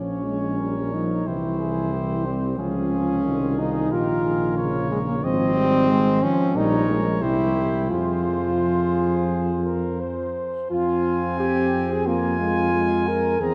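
Bathed in a deep church reverb, this noble, stately passage for brass quintet, cut from a longer classical piece, moves with an uneven, rubato pulse and shifts into a new section at 10.7 seconds. A clear, soft-attacked trumpet carries the melody over a mellow flugelhorn second line set in the background. Up front, a smooth-topped French horn plays the accompaniment alongside a warm, close-miked trombone further back, while a tuba with light vibrato anchors the bass.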